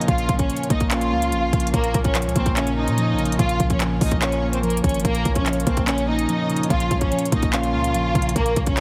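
Trap-flavored hip hop in Bb minor at 145 BPM with a half-time feel, this short excerpt cut from a longer piece sits on a single Bbm chord and carries an eerie, melancholic mood. A lush studio violin section leads the melody up front, its bowed ensemble tone smooth and even with gentle vibrato, ranging from Bb3 to F5. Beneath it, muted, felt-like synth keys with a chorus effect supply soft, full-bodied, dark accompaniment, while a reedy, nasal hand-pumped harmonium breathes sustained chords in the background. The electronic trap kit is placed prominently, pairing a hard-clipped kick with crisp hi-hats and handclaps, and a deep, boomy 808-style bass enters at 0.1 s with a mellow sine tone that decays after each note. Light reverb and digital ambience surround the mix, which is heavily compressed into a radio-like sound.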